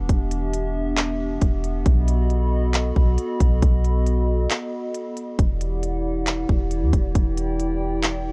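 A worn, warbling cassette-tape sound with pitch drift colours this hazy, melancholic cut from a longer atmospheric cloud-rap piece in E minor at 136 BPM with a half-time feel, where a nostalgic, detuned pad with chorus, built-in reverb and sidechain pumping sustains Em7 and B7 chords over a deep, round 808-style bass and an up-front trap kit of hard-clipped kick, crisp hi-hats and handclaps, with a break from 4.5 to 5.4 seconds.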